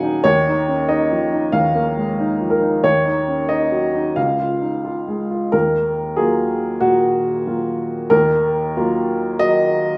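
A lone upright piano opens this short excerpt of neoclassical minimalist music, its woody, open tone sitting up front as it moves at a rubato 93 BPM in Eb minor. The harmony drifts from a suspended chord over Eb through Ebm7 and Db before settling on Ebmadd9 at 5.5 seconds, where a second section begins, spanning from deep bass notes to the upper middle of the keyboard. A moderate scoring-stage reverb gives the melancholic, wistful playing a gentle sense of space.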